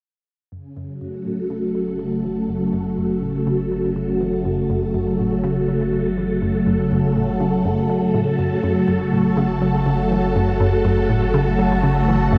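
A swirling, vintage string machine sits up front, holding bright sustained F# minor chords through ensemble chorus and phaser while a filter sweep moves across it from 0.5 to 12.4 seconds. Beneath it, a hollow, bouncy square-wave pluck with a detuned edge and a noise layer repeats a riff through chorus, phaser and delay as it fades in, and a round, deep analog bass fades in on a low F#. This cosmic, expansive space music excerpt moves at a straight 122 BPM in 4/4 inside a huge, wet ambient reverb.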